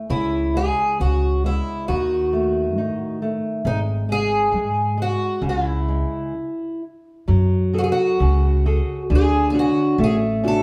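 A small trio plays live in one room, wrapped in a wet stone reverb that lingers for just over a second. It is a fado-style ballad, longing and passionate, with a free, rubato sway over a 2/4 pulse, cut from a longer piece. Up front, a fingerpicked twelve-string acoustic guitar carries the melody with a boxy archtop tone and a shimmering, octave-doubled ring. Beside it, a small fingerpicked nylon-string guitar with fresh strings supplies the accompaniment, and a woody pizzicato upright bass on steel strings anchors the low end. The harmony moves through dark, searching chords such as D#dim and C#m, and the music halts for a stop from 6.3 to 7.3 seconds. It then resumes on a new tonal centre with F#madd9 and settles onto Dmaj7.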